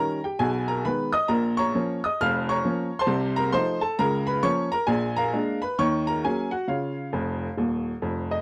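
A clear, woody upright piano plays alone from the start, its short-sustained notes sitting up front as it drives an exuberant stride jazz passage at 134 BPM in 4/4 with a swung eighth-note feel. The harmony moves through chords such as A#m, F7/C and D#m7 before settling on C#, with the piano ranging from deep bass notes up into the high treble. A fill closes this brief cut-down passage from 7.1 to 8.4 seconds, all framed by light reverb and a dark production.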